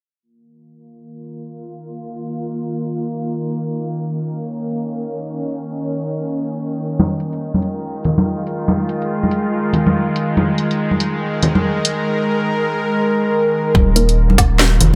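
This brooding, heavy deep dubstep excerpt opens on a tense, nasal, string-like drone holding sustained chords from about 1.1 seconds, its slow attack, vibrato and built-in reverb giving it a bright, up-front presence while a filter sweep runs across it. At 142 BPM in 4/4 with a half-time feel and swung sixteenths, ringing congas played with soft hands enter around 7.0 seconds, and a garage drum kit of cracking snare, warm hi-hats and woodblock joins just after. Near the close, at 13.7 seconds, a deep, thick, saturated sub bass and a tight electronic kick drum arrive up front, marking a brief final section. A muted, dark dub chord stab flickers in the background with phaser, lush chorus and dub echo. The whole piece sits in a moderate spring reverb behind a low-pass filter, and it is cut from a longer piece.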